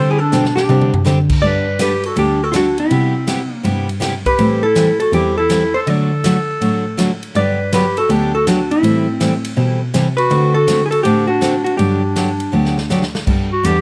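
A brisk swung 4/4 at 162 BPM drives this cheerful, down-home western swing excerpt in G major, cut from a longer piece. A dark, clean hollow-body electric guitar carries the melody up front, while a clear, present clarinet in a classical style plays a second line beneath it. A bright, full-bodied steel-string acoustic guitar picks the accompaniment, its finger squeaks audible, and a single bowed cello supplies a smooth, boxy bass with vibrato. An airy, polished big-band drum kit with a boomy kick and medium-tuned snare enters at 0.3 seconds with a fill, and another fill at 12.5 seconds rounds off the passage. The chords move from D7sus4 through Gadd9, Cmaj7, Am7 and D7 back home to Gmaj7, finally settling on Gadd9, all set in light reverb.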